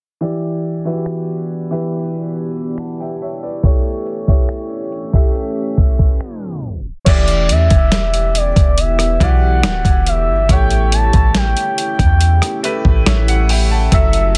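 A slow, straight 70 BPM groove in 4/4 comes from a gritty, sampler-style soul drum kit with a thumpy kick, finger snaps, rim clicks, hi-hat, crash and a softly clipped snare. Bright grand piano chords with audible action noise sit over a deep, moody, detuned pad with chorus, built-in reverb and sidechain pumping, moving between Em7 and A7 in E dorian, while a filter sweep runs through the first half and a tape stop closes it at 7.1 seconds. A smooth, gliding lead with vibrato, chorus and delay sings from 6.7 seconds, and a round, soft 808-style bass joins at 7.1 seconds, giving this sensual, longing contemporary R&B excerpt its dense, heavily limited finish.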